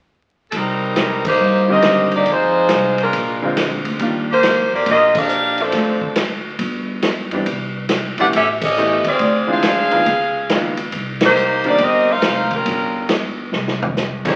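This dramatic, sultry big band swing excerpt opens at 0.5 s with a bright, tight saxophone section carrying the melody up front with a light vibrato. Entering at the same moment are a woody pizzicato upright bass on steel strings and a swinging big-band drum kit that sits up front with a punchy kick, a medium-tuned snare, hi-hat, ride, crash and toms. A brilliant, intimate upright piano adds accompaniment from 1.7 s, slightly detuned and with audible action noise, then drops out and returns at 7.3 s for the rest of the passage. Sharp band accents punctuate the melody over restless jazz harmony, and a short drum fill arrives just before the close. The whole performance sounds like a very old 78 rpm record, with vinyl crackle and a moderate large-studio reverb giving the band a roomy, vintage glow.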